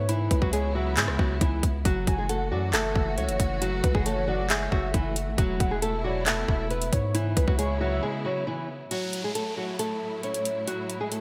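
A fingerpicked nylon-string guitar with woody, old-string character sits up front and carries the melody of this dark, hard-hitting trap excerpt, softened by a low-pass filter and trailed by delay. Alongside it, a velvety detuned synth lead with chorus and vibrato traces a second line, while a lush bowed string section holds sustained chords with expressive vibrato and portamento over a moody minor progression. A deep, sine-toned 808-style bass with a fast attack and long decay anchors the half-time groove, and the electronic trap kit punches through with a hard-clipped kick, metallic hi-hats, handclaps and rim clicks, all treated with gated reverb. The bass and synth lead drop out at 8.0 seconds for a brief break, and a new section begins at 8.9 seconds as an electronic downlifter sweeps in beneath the guitar, strings and drums. The mix has a bright 1980s-style digital sheen with light reverb.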